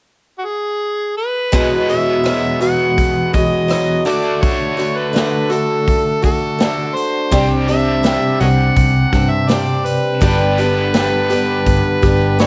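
A gritty, amplified harmonica with light vibrato and tongue slaps carries the melody up front from 0.4 seconds in this jangly, hopeful folk rock and heartland rock fragment at 83 BPM, joined at 1.5 seconds by a boxy, swing-picked acoustic guitar, a bright, crunchy double-tracked electric riff with harmonic tremolo, and a natural country drum kit with a punchy kick and rim clicks, while a dark, round foam-muted electric bass arrives at 7.3 seconds as the chords move from Eadd9 through D and Csus2 to G in a small-room home recording on cassette.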